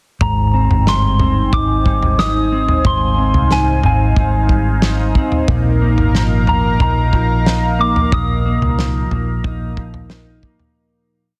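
Blissful and ethereal, this short dream pop piece in Eb major drifts at 91 BPM as a pure, softly chorused FM synth bell sings a motif-based melody over a swirling, detuned phased analog pad, a dark, clean fingerpicked electric guitar rolling through arpeggios with analog chorus and tape echo, a round, foam-muted vintage bass, and a loose indie drum kit with a fat snare, tight kick and slow tom pulse, all set in a concert hall reverb and moving from Abmaj7 to Ebsus2 before fading out from 8.1 seconds, with the guitar ringing on until 11.3 seconds.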